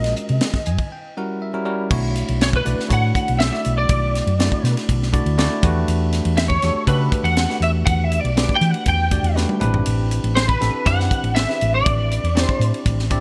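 A straight 4/4 groove from a tight funk drum kit with a high-tuned snare drives this intense, nocturnal electric jazz fusion passage, taken from a longer piece, as a round, punchy hollow-body short-scale fingered bass sits up front beneath bell-like tine electric piano chords and fills, while a twangy, slightly broken-up lead guitar with ensemble chorus carries the melody, with a break arriving at 0.9 seconds and a drum fill at 9.4 seconds inside a bright 1980s-style digital production touched by light reverb and small room ambience.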